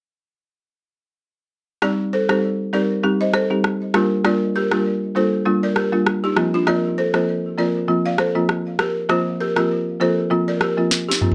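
Sultry and hypnotic, this afrobeats excerpt lightly swings as a rustic, woody folk marimba comps through Cm, Gm7 and Fsus4 beneath a buzzing, airy balafon riff touched with delay, all driven by an electronic afro-pop kit with a sharp snare, rim clicks and toms that ends on a drum fill at 10.9 seconds in a small, moderately reverberant room.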